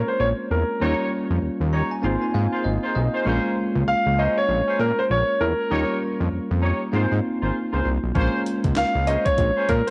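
This short cut from a longer new jack swing R&B piece opens with a present, up-front grand piano carrying the melody over bell-like tine electric piano chords and a fat, sawtooth analog bass, all sitting in a confident, bouncy swung groove. The bass is thick and detuned with tube saturation and a filter sweep, and its fast attack and sustained notes keep it pushed forward in the mix. Between 1.4 and 3.3 seconds the electric piano, bright and clean as if heard through its built-in speakers, steps out with a fill, while a mellow horn section, present from 0.8 seconds, adds soft-attack jazz-style stabs with light vibrato and a touch of analog delay. The harmony cycles through Bbm7, Eb7 and Ab69 chords before settling on Bbm9, and at 8.2 seconds a gritty, compressed, pitched-up breakbeat kit arrives with a thumpy kick, high-tuned snare, hi-hat and handclaps. The whole home cassette recording carries a vintage tape character and sits in a lush hall reverb.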